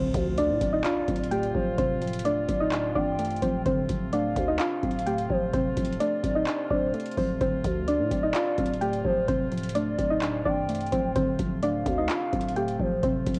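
A faint electronic impact opens this brooding, melancholic trap excerpt at 128 BPM in half-time D phrygian, where dark, rounded plucks carry the melody and a softer accompaniment over a growling, buzzy 808-style bass and vintage brass chords with light vibrato, as a booming analog drum machine with deep kick, metallic hi-hats and handclaps joins at 0.1 seconds and a mellow gliding portamento lead adds a second line from 0.4 seconds, all set in light reverb with a cassette-tape character.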